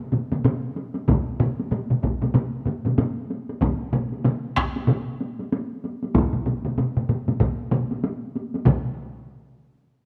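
Captured with close, detailed microphones on a moderately reverberant scoring stage, this driving, powerful Japanese traditional excerpt at 95 BPM in 4/4 with a 60% sixteenth-note swing layers three taiko ensembles struck with hard and heavy sticks (one compressed and saturated, one set back in the background), joined at 1.1 s by a vintage, band-limited solo taiko played with heavy sticks up front, before the music shifts into a new section at 8.7 s.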